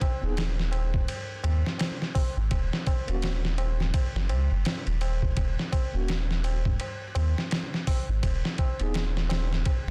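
A gritty, sampler-style soul drum kit with a thumpy kick and fat snare opens this brooding, smoky trip hop excerpt alongside a low-tuned, ringing tabla, joined at 0.2 seconds by a deep, round dub sub bass sitting up front and a worn, slightly out-of-tune tine electric piano tucked in the background with light overdrive, tremolo and tape echo, moving from Ebm7 to Abm/Eb in a dense, dry, heavily limited mix.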